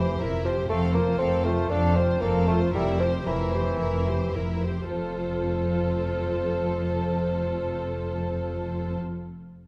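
The rhythm moves in a rubato 4/4 at a quick 105 to 122 BPM, slowing over the opening 4.9 seconds before a second phrase begins. This cheerful, graceful classical-period orchestral passage in F major is cut from a longer movement, its harmony alternating between C7 over F and F. A violin section carries a smooth, lush melody set back in the background, while a second violin section sings an even line beneath it and a rich viola section fills in the bowed accompaniment. A warm, roomy solo bassoon stands up front with its own accompanying line, and a focused cello section and an expressive, close double bass section hold the F bass together. The whole ensemble plays with vibrato and sits in a wet scoring-stage reverb.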